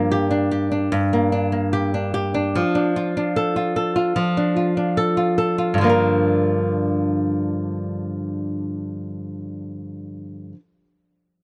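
A straight 4/4 pulse at 74 BPM carries this wistful, tender pop fragment in G minor, built on a fingerpicked flamenco guitar accompaniment that moves from Gm to Dm at 2.5 seconds. The acoustic guitar sits up front with a warm tone, and finger squeaks are audible as it spans G2 to Bb4, with a new section beginning at 5.8 seconds. The production is dark and dry, with little reverb, which keeps the sound close and intimate.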